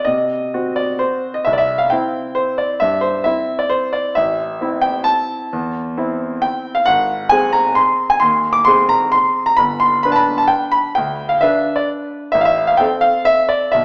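A clear, smooth grand piano with a vintage, short-sustained tone plays a playful, graceful classical waltz in C major at 131 BPM in 3/4 with a rubato feel, sitting up front in a moderate recital-hall reverb with a small-speaker sound as it ranges from G1 to D6 through chords moving from Cdim to C, Am, Ab7, G and back to Am across this 13.8-second cut from a longer piece.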